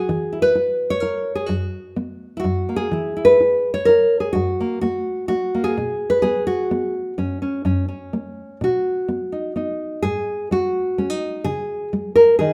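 Folk played on a lone nylon-string guitar, this short passage taken from a longer piece feels hopeful and peaceful, moving in a three-beat lilt. The fingerpicked guitar sits up front with a deep, classical tone, ranging from its low strings up into its higher register. It opens on open, unharmonized notes before settling onto an F# suspended chord that resolves to F#, returning to single lines between chordal moments. Around 8.6 seconds the harmony shifts to B, then moves through G# and C# power-chord shapes, giving the close a sense of gentle forward motion. A moderate, roomy studio reverb surrounds the guitar with a soft halo.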